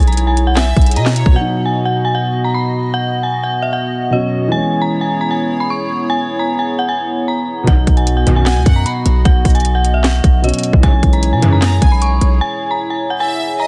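A half-time trap groove drives this wistful yet triumphant hip hop excerpt, its electronic kit pushed up front with a hard-clipped kick, sharp snare, crisp hats and handclaps. The drums and a punchy, heavy 808-style bass play together briefly at the start, drop away at 1.4 seconds, and return at 7.7 seconds before a break at 12.4 seconds. Throughout, an eerie, detuned FM synth bell carries the melody with a warbling, vintage, inharmonic tone, colored by chorus and tape echo. Beneath it, a mellow, boxy concert grand piano supplies accompaniment with long sustain, while a hollow, airy, flute-like pad holds chords. A clear, earthy violin section adds a second line in short, close-miked passages touched with tape echo, and an edgy, nasal sync-sweep polysynth punctuates the second half with bright, full-bodied stabs. Digital ambience surrounds the mix, and the master is dense and heavily limited.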